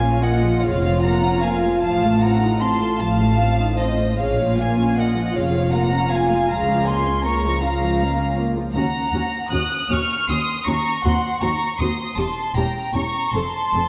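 Tender and warm, this slow romantic movement for string orchestra unfolds in Bb minor at 52 beats per minute in a rubato 6/8, cut from a longer piece. A symphonic violin section carries the melody with a pure, floating tone and soft attack, bowed sul tasto, while a chamber violin section beneath it adds an intimate second line touched with light vibrato. Dark, woody violas with a smooth top fill in the lush accompaniment, and the bass is shared by a cello section sitting in the background and a double bass section reaching down to E1, both bowed sul tasto with a gentle attack. The harmony moves from Bb minor through F7/A, Ebm7 and a Cdim/Eb before leaning on a C13b9/E at 12.2 seconds and settling on F at 13.3 seconds. A scoring-stage reverb of 1.8 seconds gives the ensemble a spacious, wet glow while the violins stay close.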